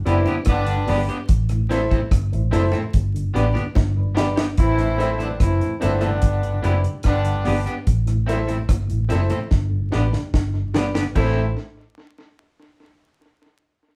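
Wet studio reverb and vinyl crackle frame this roots reggae excerpt, played by a band together in one room at 73 BPM in a straight 4/4. The mood is serious and meditative, circling between G and A minor in A dorian. Up front, a deep, dry reggae drum kit with a high-tuned snare, tight kick, rim clicks, hi-hat and crash sits beside a dark, round, foam-muted vintage electric bass. A warm, tight horn section carries the second line with vibrato and octave doubling. A twangy electric guitar at the edge of break-up and a woody, open upright piano add accompaniment and stabs, while a mellow tonewheel organ sits in the background, colored by chorus vibrato and a slow rotary speaker. Very quiet, low-tuned bongos played with hard hands enter at 0.3 seconds, and the drums play fills at 3.8 and 9.5 seconds.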